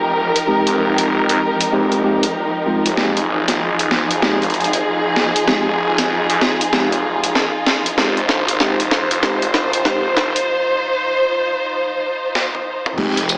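The recording sits in a moderate hall reverb with a 2.9-second tail, thinned at the bottom and pushed through a small-speaker tone that gives this cut from a longer glitch hop piece a boxed-in, lo-fi character. At 96 BPM in 4/4 with a swung 16th feel in F minor, the mood is playful and swaggering, built over a single Fm9 chord as one long build-up. Up front, a dark symphonic string section holds bowed, vibrato-rich sustained chords, pumping under sidechain and shaped by a filter sweep across the passage. Beneath it, a swirling, phased and detuned saw bass adds a thick, saturated low end. A gritty, pitched-down sampler-style boom bap kit sits prominently, its high-tuned snare, crash, hi-hat, tambourine and toms rolling through long fills, while a mellow tine electric piano adds clean stabs through tape echo with its own pumping. A break arrives at 10.5 seconds, and at 13.0 seconds a faint, thumpy electronic kick lands just as the section closes.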